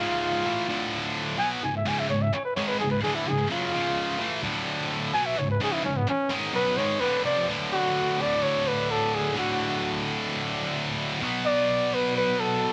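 Over a straight 4/4 pulse, this heavy, relentless metal passage pairs a bright, double-tracked, high-gain electric guitar riffing up front through C#, D5, D and Bm with a jazz-style flugelhorn whose soft attack, light vibrato and scooped notes, treated with tape echo, carry a featured solo through the first 7.5 seconds before the music moves into a new section, all in a small room with light reverb.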